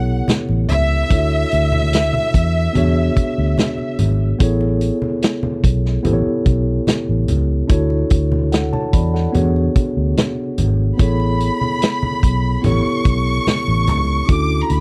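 A lush bowed violin section carries the melody in this romantic 1970s-style soul piece, its smooth, even vibrato touched with tape echo as it sings in a high register before falling away at 4.0 seconds and returning at 11.0 seconds. Underneath, a clean tine electric piano plays accompaniment throughout, heard through its built-in speakers and sitting up front. A dark, round, foam-muted fingered electric bass gives a punchy low end, and a vintage drum kit of hi-hat, tight kick and medium-tuned snare drives the straight 4/4 groove at 73 BPM with a gritty, saturated sound and a rolled-off top. Low-tuned, thick-skinned congas played with soft hands sit distant in the background, heard in a large room. The harmony moves through A7, Dmaj9, E13 and Amaj9 in A major, and the dry, close studio sound gives this warm excerpt an intimate, vintage feel.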